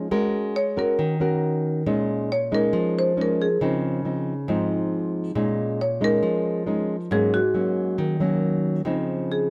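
Bossa nova at 137 BPM in Bb minor, melancholic and smooth, this short excerpt pairs a woody marimba on rosewood bars, struck with medium mallets and carrying the melody, with an up-front, thumb-plucked classical nylon-string guitar whose warm tone and audible finger squeak shape chords such as Ab9sus4, Bbm7 and Dbmaj9, both heard through close, detailed microphones with light reverb and tuned to A4 = 443 Hz.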